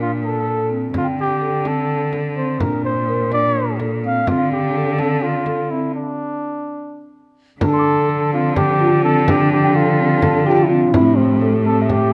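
Restless and pensive, this contemporary chamber piece in an uneven 7/8 pairs a mellow, up-front flugelhorn melody with woody soft-mallet marimba arpeggios and a rich, bowed cello bass with vibrato, while a close, dry frame drum adds percussion and a delicate, bell-like celesta sits further back. After a stop in the middle, a warbling, nostalgic tape-like pad with chorus enters quietly in the background at 8.5 seconds, and a solo French horn adds a brief second line from 10.2 seconds. The close, detailed sound is set in a moderate recital hall reverb, and the excerpt is cut from a longer work.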